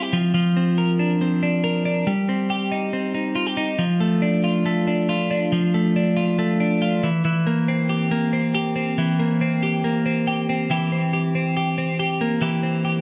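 In a straight 4/4 at 139 BPM, this indie pop passage in F major moves with an easy, steady pulse, and it is clipped from a longer piece. A twelve-string electric guitar plays alone for the full 13.0 seconds, its clean, picked tone twangy and compressed, sitting up front with a touch of spring reverb. Ranging from E3 to Bb4, it moves through Bbadd9 and Cm before settling on F6 at 3.8 seconds and reaching C7 at 7.0 seconds. The playing shifts into a new section at 10.7 seconds, giving the short stretch three distinct parts. A modest small-room ambience surrounds the guitar, lending the nostalgic yet bright mood an intimate, close-up feel.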